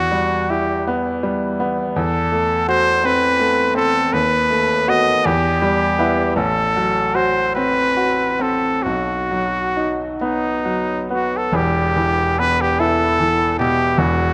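Classical romantic duo in E minor, solemn and melancholic, moving in a slow, rubato 6/8 at around 43-57 BPM (dotted quarters), where an up-front, bright trumpet sings the solo melody with light vibrato in classical style over a brilliant, vintage-toned grand piano accompaniment with long sustain, captured by close, detailed microphones in light reverb, with the harmony settling on B before turning back to E minor as a new section begins at 11.5 seconds in this fragment of a longer piece.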